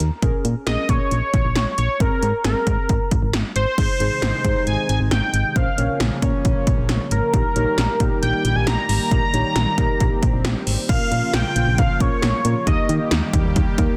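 A dense, heavily limited modern mix with light digital reverb carries this cool, nocturnal synth-pop excerpt at 135 BPM in Bb dorian, built on a punchy, round FM bass and up-front 80s electronic drums with gated snare and metallic hats, while muted, felt-like synth keys with chorus move through Bbm7 and Abadd9. A bold, retro octave-doubled sawtooth lead with vibrato, chorus and delay carries the melody from 0.7 seconds, and a smooth analog pad with slow attack and long release enters at 3.8 seconds as the chords shift through Ab, Bbm and Eb. An electronic swell in the background appears at 10.1 seconds just before the harmony returns to Bbm.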